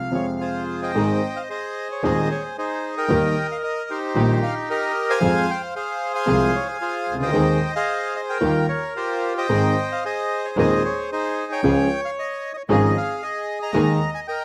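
A rubato 4/4 pulse around 113 BPM carries this dramatic, melancholic tango fragment in Ab major: a reedy, bright bandoneon sings the melody up front over a boxy concert grand piano with deep bass and long sustain, a bowed, earthy double bass with light vibrato enters at 0.9 seconds, and a very quiet, dark, woody string section adds lush bowed stabs from 1.0 seconds, heard in a dry open-air sound.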